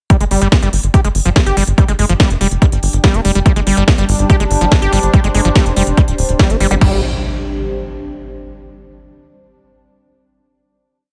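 A punchy four-on-the-floor electronic kick, a cracking snare with smooth hats and a crash, a tight, rolling sixteenth-note sequencer bass and a squelchy, gritty acid line all start together at the opening of this hypnotic, alien psychedelic trance piece at 143 BPM in 4/4. The kick sits up front and loudest, while the sawtooth sequencer bass, dark and tube-saturated, drives low beneath it. The distorted acid riff, built on 32 steps with accents and slides, carries resonant filter sweeps, sidechain pumping and a digital delay. A deep, moody ambient pad fades in from 1.3 seconds, detuned and wave-folded with chorus and its own reverb, pumping in the background through slowly shifting chords. At 3.5 seconds a bubbling stepped-filter texture adds a resonant, sustained drone, and after a burst of zap and impact effects the groove gives way at 6.8 seconds to a final chord carried by the pad in an otherwise dry, close-sounding mix.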